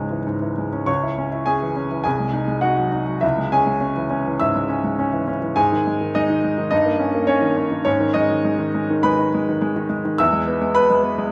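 Sparkling and heroic, this classical virtuoso piano study in C# minor moves at 104 BPM in 4/4 with a rubato feel, tuned to A4 = 438 Hz and cut from a longer piece. A clear, intimate baby grand plays solo from B#1 to E6, sitting up front with audible action noise, while the harmony passes from C#m through G#7/B#, G#5 and D#7/G to G#m and finally E at 10.2 seconds. A moderate recital hall reverb gives the natural piano tone a sense of space.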